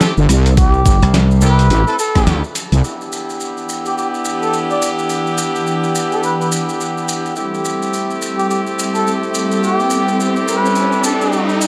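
Playful, gritty glitch hop swings from the start on a pitched-down, filtered boom bap kit of snare, hi-hat, rim click and crash, joined by an overdriven, knocking electronic kick, a heavy saturated wobble bass and a punchy, bright slap bass, all of which are gone by 3.0 s after a band accent at 2.3 s. Throughout, a breathy, distant trumpet carries the jazz-style melody over clear, pumping horn stabs with dub echo and grainy maracas, while a smooth, detuned analog pad enters with sustained chords as the beat falls away. An electronic riser sits in the background from 9.2 s in this dark, lightly reverberant mix.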